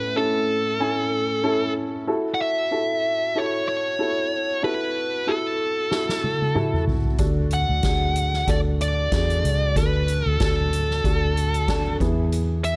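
A light small-room reverb frames this anthemic, piano-driven pop excerpt at 94 BPM with a gentle sixteenth-note swing, where an up-front, distorted fuzz lead guitar carries the melody over a dark, woody, slightly detuned upright piano moving through A, F#m7, D and E, a soft-mallet drum kit with a boomy kick enters on a fill at 5.9 seconds, and a round, punchy, foam-muted vintage fingered electric bass joins at 7.2 seconds.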